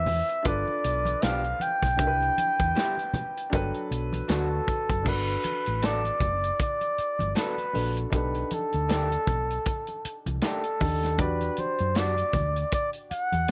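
A breathy, mellow flugelhorn carries the melody from the start, with scooped notes and light vibrato, over an intimate grand piano whose action noise is audible and a round, dark hollow-body bass, while a dry soul drum kit with a punchy kick and dark cymbals sits up front alongside low-tuned, damped congas further back. This lush 1970s-style soul excerpt moves at an unhurried 78 BPM in G major with swung sixteenths, and at 1.2 seconds a slightly broken-up electric guitar joins in the background, colored by tube saturation and spring reverb. The harmony drifts from G7 and Cmaj7 into a second section at 5.1 seconds built on Gmaj9, B7alt and Em9, all held in a light studio reverb with a lush, warm mood.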